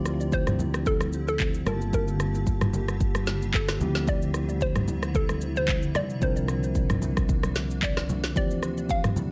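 An up-front afro-pop drum kit drives this late-night, hypnotic amapiano excerpt, its electronic, produced sound built on a deep kick and woody snare with handclaps, rim click, shaker and toms, lightly swung in 4/4. A fingered electric bass, amped and direct, holds down the low end until 8.3 seconds, while ringing congas played with soft hands sit in the background from 0.5 seconds. A hollow, bouncy square-wave pluck carries the melody with a mellow, detuned tone thickened by chorus and tape echo. A clean tine electric piano supplies warm accompaniment, and a cloudy granular pad drifts behind it, evolving and blurred, with its own reverb and sidechain pumping. The harmony moves from Dm11 to Gm9, back to Dm11 and on to C9sus4 before returning to Dm11, all in a dry, close-sounding mix.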